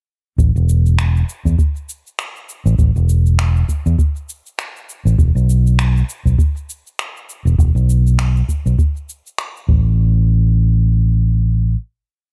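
A lightly swung sixteenth-note lounge beat in four drives this short sunset chillout piece, with a soft, deep electronic kick up front and a faint, layered bed of electronic shaker and finger snaps. A dark, round fingered electric bass, amped with tube saturation, carries a syncopated riff low in the register and sits forward in an echo-heavy digital ambience that keeps the mood smooth and warm. The kick stops at 9.8 seconds, the groove gives way to a final hit at 10.0 seconds, and the bass rings on until 11.7 seconds.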